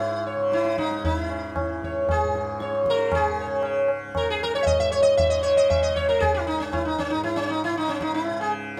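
A straight 4/4 pulse at 116 BPM from close, dry, high-tuned ringing tabla carries this meditative, solemn Hindustani fragment in raga Shivaranjani on C#, cut from a longer piece, where an up-front, bright plectrum-plucked sitar with buzzing, shimmering sympathetic strings sings the melody from C#4 to E5 over a softly plucked tanpura drone low in the mix, all played live in one room with moderate studio reverb until the tabla stops at 8.5 seconds and the strings ring on to 8.8.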